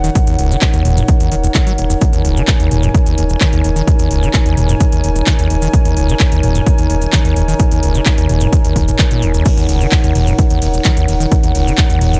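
Acid house at 129 BPM in Eb minor, a trippy, hypnotic excerpt resting on Ebm7, where a punchy, up-front electronic kick from 0.2 s drives a booming analog drum machine of metallic hi-hats, handclaps, ride, crash and toms, a grainy cabasa sits in the background, a squelchy, resonant sawtooth acid bass riff with tube saturation plays above a round sine sub bass with sidechain pumping, and a moody, nasal, detuned analog pad sustains chords with chorus and the same pumping, the mix sounding dry and gritty.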